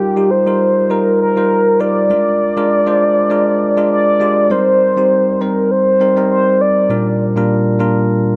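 A lightly swung 4/4 pulse at 100 BPM drives this romantic, glossy pop fragment, where a bright, clean, bell-like tine electric piano sounds chords moving from Ebadd9/G through Bb7 and Cm7 to Gm7/Bb beneath a round, warbling, horn-like synth lead with chorus and vibrato that carries the melody until 7.2 seconds, leaving the piano alone until 8.4 seconds, the whole set in a moderate plate reverb.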